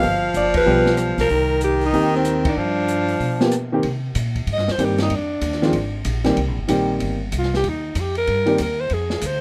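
Small-group swing and bop jazz in a minor key, this short cut from a longer piece feels cool and swinging, driven by a brisk swung pulse in four. A growling alto saxophone carries the melody, raspy and gritty with vibrato and a close-miked presence, while a breathy, whispered baritone saxophone adds a soft second line that drops out at 3.7 seconds. The pizzicato upright bass sounds woody and steel-strung, sitting up front, and the upright piano enters at 0.7 seconds with boxy, short-sustained accompaniment. An open acoustic drum kit in a small room brings dark cymbals, hi-hat, ride, rim clicks, a medium-tuned snare and a boomy kick, kept lower in the balance. Band accents land early, and from 3.8 seconds the alto steps into a solo over a rough home-demo mix with light reverb and studio ambience.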